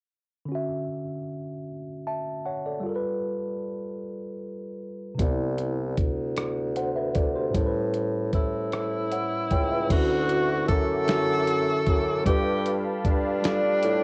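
A slow six-eight pulse at 51 BPM carries this tender R&B passage in D major, a short cut from a longer piece recorded at home on cassette with light reverb. A worn, slightly out-of-tune tine electric piano opens by itself, clean and direct with a tape tinge, moving through Dmaj9, G9, Cmaj9 and A9. At 5.2 s a dusty, sampler-style drum kit arrives, compressed and gritty, with a thumpy kick, medium-tuned snare, rim click, hi-hat and crash, re-recorded in a large room and colored by tape. The bassoon enters with it, taking the bass line in a classical style with vibrato. At 8.3 s a breathy tenor saxophone takes the melody, whispered and intimate with a soft attack and vibrato, distant and roomy yet up front, carrying plate reverb and cassette grain. From 9.9 s a new section begins, and a warm, detuned sawtooth pad with a slow attack, chorus and plate reverb holds sustained chords quietly underneath.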